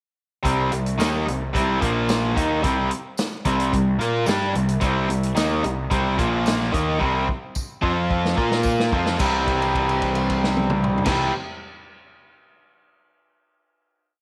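A moderate echo-chamber reverb gives this short, complete classic rock piece a roomy sheen, with a swaggering, confident mood and a straight 4/4 feel. Up front, a biting overdriven guitar plays a power-chord riff from 0.4 seconds, joined almost at once by an overdriven semi-hollow guitar that sits in the background with a hollow-body tone on the same riff. A bright, punchy fuzz bass drives eighth notes underneath, doubling the guitar riff, while a vintage drum kit with a punchy kick, medium-tuned snare and rolled-off top holds down a pop groove up front. A jingly, close and dry tambourine adds a pattern in the background from 1.0 to 9.4 seconds. The riff moves through C5, Bb5 and F5 power chords, a drum fill runs from 7.0 seconds, and the band lands on a held final C chord at 9.2 seconds that rings to the end.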